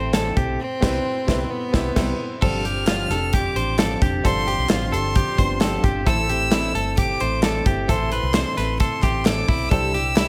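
A bright, airy-bowed violin sings an intense, vibrato-laden melody over fingerpicked steel-string acoustic guitar, twangy compressed clean electric guitar arpeggios, a woody upright piano tucked in the background and a round, foam-muted electric bass, as punchy up-front studio drums and very quiet, hollow handclaps join at 0.1 seconds in this youthful, nostalgic jangly indie pop excerpt at 132 BPM, with a band accent from 0.6 to 2.4 seconds over chords moving from Am through Cmaj7 and G7sus4 to Cadd9.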